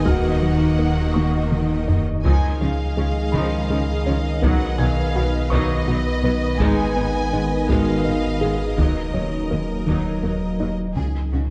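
A swaying 6/8 pulse from close, dry taiko, with a fill at 1.2 seconds, drives this brooding, tense hybrid orchestral and electronic film cue, where an intense, distant violin melody and a closer, focused violin second line sing over background violas, cellos and a rich, smooth-topped double bass section, a punchy pitch-drop sub bass, sustained trombone chords, a deep, moody chorused pad, a felt-muted upright piano with audible action noise and digital delay, and very quiet nasal pluck arpeggios, the whole ensemble set in a wet concert hall reverb with a dark, warm production.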